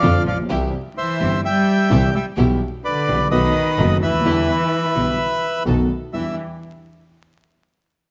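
Sultry and tense, this short tango excerpt in E minor moves at 128 BPM in 4/4 with a rubato feel, as a reedy, up-front bandoneon carries the melody over a distant cello bowing an expressive second line with vibrato and portamento. A dark, mellow concert grand piano with deep bass and short sustain supplies the accompaniment, a focused double bass bows the bass line, and a chamber string section with gut-string, period-style tone adds bowed stabs in the background. Harmonies move from C through Em/B and B7 to Em7, captured with close, detailed microphones, light reverb and a touch of vinyl crackle.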